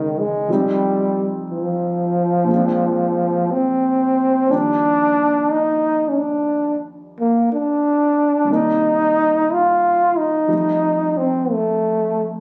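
A trombone and a grand piano begin together at the very start of this short, romantic jazz ballad, cut from a longer piece and moving at a slow 60 BPM in 4/4 with a gentle swing on the eighth notes. The trombone carries the tender melody up front as a solo voice, its tone warm and shaded with vibrato and scooped notes in a jazz style, ranging from Eb3 to F4. Beneath it, the piano sits well back in the mix, warm, intimate and natural in sound, with short sustain and audible action noise as it supplies the accompaniment. The harmony moves from Fsus2 through Bb9 to a lingering Ebmaj9, then on to Cm7 and F7. Captured on a phone in the room, the recording carries a light club reverb, and the trombone ends at 12.3 seconds, just before the piano at 12.4 seconds.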